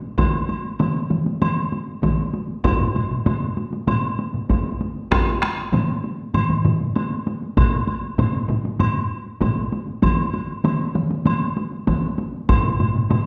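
A straight, steady 4/4 pulse drives this short cut from a longer Japanese traditional taiko ensemble piece, and the mood is driving and powerful. Two solo taiko drums sit close to the listener. One is struck with hard sticks and placed up front, and the other is played with heavy sticks and stops at 12.0 seconds. A taiko ensemble using heavy sticks also sounds dry and near, joining from 0.2 seconds. A second ensemble layer with hard sticks enters at 2.6 seconds, carrying the ring of a live room and sitting forward. A woodblock adds a woody tone from a distance, set in a large room and quieter than the drums, while the recording as a whole is heard from further back in a recital hall with a wet, resonant reverb.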